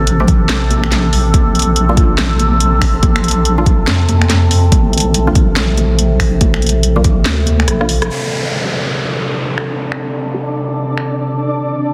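Deep dubstep at 142 BPM in a half-time, swung feel, this heavy, brooding excerpt in A phrygian opens on a drop, where an up-front, wobbling sine-and-triangle bass and a deep layered kick anchor a bright, resonant drone with moving overtones, muted sawtooth dub chord stabs treated with phaser and dub echo, a garage kit of cracking snare, snaps, rim clicks and filtered hats, and distant congas trailing dub echo in the background, over Am7 and Bb chords. The kick drops out at 7.7 seconds under a drum fill, and a band accent lands at 8.0 seconds. From 8.1 seconds the chords return to Am7 as an electronic downlifter falls in, a filter sweep passes over the drums, and a mellow, grainy, flickering granular texture fades up beneath the lingering drone.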